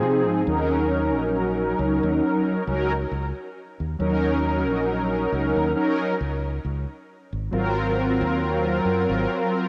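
A rough cassette-demo sound soaked in a lush, wet hall reverb frames this hazy, melancholic vaporwave fragment, where a mellow, detuned sawtooth synth brass with subtle chorus, tape echo and vibrato sits up front holding sustained Ebm7 and Ab13 chords over a dark, round, punchy fingered electric bass, all with a gentle swing on the 16ths.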